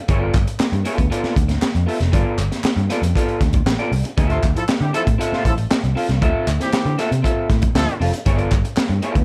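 A gritty, saturated breakbeat kit with a high-tuned snare and tight kick sits up front alongside a dark, round, foam-muted picked bass and a slightly broken-up lo-fi electric guitar, all entering at 0.1 s in this funky, hypnotic 118 BPM funk excerpt that moves from G9 to Dm9 and back, with crisp compressed group handclaps layered throughout, a smooth horn section with light vibrato adding a second line from 4.3 s to 8.0 s, and a light reverb over it all.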